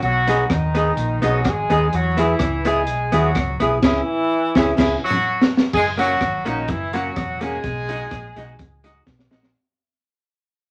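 Ska with a joyful, cheerful lift, this short cut from a longer piece rides a straight 4/4 groove. A mellow horn section carries the melody in octave doubling, with light vibrato and a roomy, pop-style character while still sitting up front. Underneath, a crunchy breakbeat kit with a punchy kick, high-tuned snare and dark cymbals sounds gritty and saturated, joined by a round, hollow-body short-scale bass played with the fingers. An archtop guitar enters at 0.3 seconds with clean, compressed, picked accompaniment placed up front. A drum fill and band accent mark the passage from 3.8 to 5.7 seconds, after which the music fades out, the whole bathed in studio reverb with a layer of vinyl crackle.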